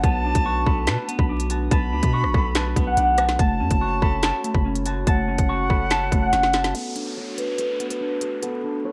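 A cold, menacing drill excerpt in half-time, where a thumb-plucked, ringing concert harp carries the melody through low-pass filtering and analog delay over a distant, reedy flute line, clean picked semi-hollow guitar, glassy, ethereal glass harmonica chords in the background, a deep, sine-toned 808 bass and up-front drums with a hard-clipped kick, woody snare, crisp hats, snaps and rim clicks, all under gritty vinyl crackle, until a drum fill at 6.3 seconds gives way to a downlifter and filter sweep from 6.7 seconds as the flute and bass drop out.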